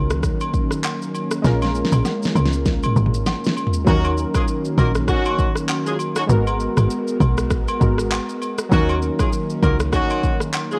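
Afrobeats in Eb minor at 99 BPM with a swung 16th-note feel, this hypnotic, smooth excerpt is cut from a longer piece and rides a woody, punchy log drum bass and a deep house drum kit with a deep kick and fat snare, both up front, while agogo bells and woodblock add close acoustic color and a drum fill runs from 1.4 to 3.9 seconds. Round, detuned analog keys with a filter sweep play a decaying accompaniment as an airy, breathy pad sustains chords, both treated with chorus, moving through Ebm7, Bbm7 and Abm9 beneath, and a tight, mellow horn section with octave doubling enters as a second line at 3.9 seconds. The dry mix carries the worn, warbly pitch drift of old cassette tape.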